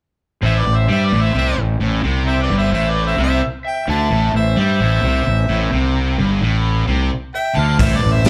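Heavy and gritty, this blues rock and southern rock excerpt grinds along at 130 BPM in A minor on a single Am chord, with a dark, double-tracked distorted guitar riff and a growly fuzz bass sitting up front from 0.4 s. A harmonica carries the melody with light vibrato and scooped notes in a punchy jazz style, while a quieter overdriven lead guitar with analog delay adds a second line. At 7.8 s a raw garage drum kit arrives with a boomy kick, high-tuned snare and hi-hat in a bright stone room, all heard as a live band in a large studio.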